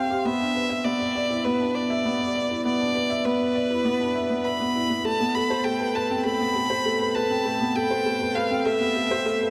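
A felt-muted upright piano anchors this luminous, hopeful fragment of electronica, playing a soft, intimate riff up front, with the action noise of its keys audible. Alongside it, a single bowed violin carries the melody, its tone focused and slightly boxy, colored by vibrato and also placed close. Both parts play throughout the 9.5-second passage, which works as a build-up at 100 BPM in a straight 4/4. The harmony moves from E5 at 0.3 seconds to Amadd9 at 5.1 seconds. A huge, wet ambient reverb with a 7.7-second decay surrounds the sound, lending the intimate playing a vast, glowing space.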